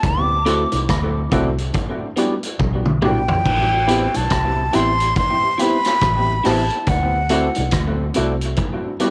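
Swung sixteenths at 70 BPM in 4/4 carry this bittersweet, smooth lovers rock reggae excerpt in A dorian, moving through D7, Em7 and Am7, where an up-front, breathy jazz flute with tape echo sings the melody until 7.7 s over a round, foam-muted fingered electric bass, a gritty, saturated vintage drum kit with dark cymbals, a tight kick and a fill at 2.6 s, and very quiet, distant, low-tuned bongos, while a worn, mellow baby grand piano and a slightly broken-up electric guitar with analog chorus join at 0.5 s, the whole set in light reverb as a home recording on cassette.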